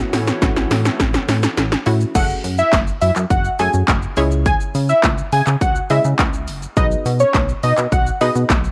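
A fat, detuned sawtooth lead with a sub octave, vibrato and slapback echo carries the melody from 2.1 seconds in this confident, bittersweet dance-pop excerpt at 104 BPM in F# dorian, where a drum-fill build-up gives way to a drop at 2.2 seconds over a punchy, overdriven house kit of kick, snare, claps, hi-hat, shaker and crash, a glossy, pulse-width-modulated synth bass, a hollow, bouncy square pluck with ring modulation, and a lush, airy unison pad that sounds only until 2.1 seconds, the bass, pluck, pad and lead pumping with the sidechain under light reverb.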